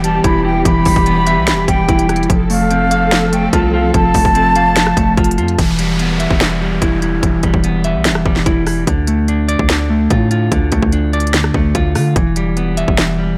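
A half-time trap beat at 146 BPM drives this brooding, eerie hip hop excerpt in E phrygian, with a hard-clipped kick, sharp snare, crisp hats, finger snaps and rim clicks sitting up front over a deep, mellow sine 808 bass. A clean, picked semi-hollow guitar plays filtered, delayed arpeggios throughout, while lush bowed strings hold sustained chords and an airy, distant flute with digital delay traces a second line until about 5.5 seconds. An electronic downlifter then sweeps in at 5.6 seconds as the chords return to Em and move on to Dm, all under light reverb.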